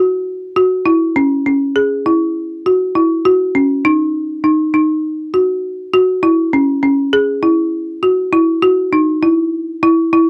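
A folk marimba struck with hard mallets plays alone from 0.0 to 10.3 seconds, its hardwood bars sounding woody, rustic and percussive as it moves between C#4 and G#4. This intricate, bright progressive instrumental runs at 201 BPM, counted in eighths, in a straight 9/8, and is cut from a longer piece. The marimba sits up front in a dry, close 1970s-style studio sound with light reverb.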